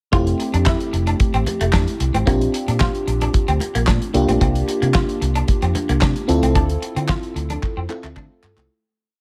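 A four-on-the-floor boogie beat at 112 BPM drives this smooth, feel-good early-eighties boogie funk piece in F major, with a dry, fat-snared 70s drum kit layering handclaps on the snare, a round, foam-muted fingered bass pumping a syncopated line up front, and a dreamy FM electric piano with a soft pad holding chorused rootless chords over Fmaj7, Bb6 and Dm7. A clean picked guitar plays a muted single-note riff through lush chorus, and very quiet, high-tuned congas slap on two with open tones on four, all in a nearly reverbless mix that fades out from 6.6 seconds as a drum fill arrives at 7.6 seconds.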